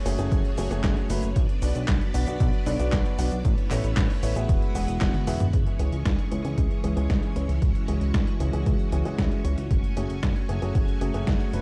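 Italo disco in a nostalgic, bittersweet mood, where a lush, vintage string machine holds chorused chords over mellow grand piano stabs touched with digital delay, a glossy, tube-saturated synth bass, a punchy analog electronic kick and a gritty, overdriven sampler-style kit of snare, hi-hat, handclaps, cabasa and toms, all in a dry, dark mix that turns at 5.5 seconds after a brief drum fill, when a filter sweep begins moving across the piano.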